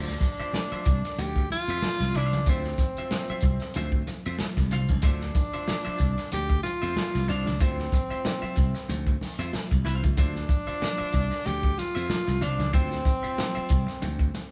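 Funk with a driving, funky swing, where a breathy tenor saxophone with vibrato and scooped notes carries the jazz-style melody over a growly, punchy slap bass, a crunchy, gritty breakbeat kit sitting up front, a twangy clean electric guitar on a single Dm9 chord and soft-handed congas in the background, all played live in a stone room with a moderate reverb and vinyl crackle, in a cut from a longer piece.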